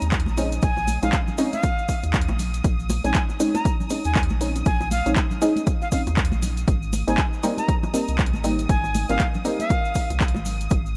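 Deep house with a warm, late-night mood, where an overdriven, punchy kick and analog drum machine with handclaps and hi-hat drive a round, deep analog bass and muted, detuned dub chord stabs pumping under sidechain with analog delay, while close, dry bongos and congas and a grainy tube shaker fill out the groove, a lush bowed violin section sits in the background, and a breathy, chiffy jazz flute carries the melody through tape echo from 0.6 seconds, all in this brief excerpt cut from a longer piece.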